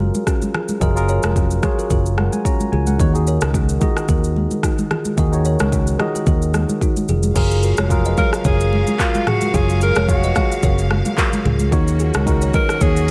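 Afrobeats at 110 BPM in F# major with a 16th-note swing, romantic and sunny, where a produced electronic kit with deep kick, metallic hats, handclaps and shaker sits up front beside a dark, round, punchy fingered bass, clean tine electric piano chords on F#maj9, damped bright congas in the background and a woody, close-miked kalimba riff with delay, before lush bowed strings enter at 7.4 seconds and a breathy, whispered alto saxophone melody with delay follows at 8.2 seconds, with the harmony moving to D#m7 at 11.7 seconds, all in a small room with faint mains hum, cut from a longer piece.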